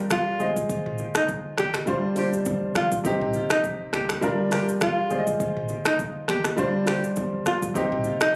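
Recorded on a phone in a small room with light club reverb, this short afrobeats clip from a longer piece has a sultry, mellow mood and moves at 102 BPM in 4/4 with a gentle swing on the sixteenths. A breathy alto saxophone carries the solo melody up front, its smooth top and light vibrato trailed by tape echo in a pop style. A warm, natural baby grand piano sits equally forward in accompaniment, moving through Ab, G7sus4, Cm and Gm7 before circling back. An electronic, produced afro-pop kit brings a deep kick, metallic hats, finger snaps, rim clicks, shaker and toms. Further back, a punchy sine sub bass with a pitch-drop attack holds down the low end, and low-tuned acoustic congas with a thick skin and soft hands add a cushioned pulse from 0.1 to 8.2 seconds.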